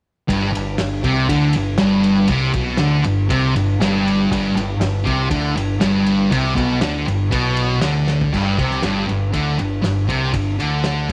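A thick, double-tracked fuzz guitar sits up front, hammering out a low, picked riff through this rowdy, raw garage rock excerpt in a straight four. Beneath it, a growling fingered bass with an overdriven, bright edge and a cloth-damped drum kit with muffled, dark cymbals, a fat snare and a tight kick thud away in a small, lightly reverberant room. A drum fill at 8.1 seconds kicks the band onto a G5 power chord for the closing stretch from 8.3 seconds.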